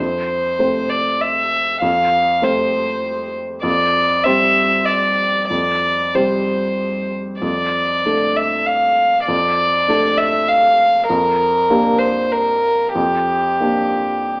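A rich violin and a felt-muted upright piano are heard together from the very start of this neoclassical piece for piano and strings, a hopeful, tender passage in F major and 3/4 time that moves at roughly 90-100 BPM with a rubato feel. The solo violin carries the melody between G4 and F5, its bowed sul tasto tone pure and floating with a soft attack, sitting up front yet with a distant quality lent by slapback echo and plate reverb. Beneath it, the upright piano supplies the accompaniment from F2 to C5, its muted, mellow sound intimate and close, and it sits lower in level than the violin. The harmony rests over an F in the bass, moving from F to Csus2/F at 3.6 seconds, Dm/F at 7.4 seconds and Gm/F at 11.1 seconds. A moderate large studio reverb surrounds the pair, while the whole recording carries an AM radio sound. Both instruments continue to the end of this 14.4-second passage, which is cut from a longer piece.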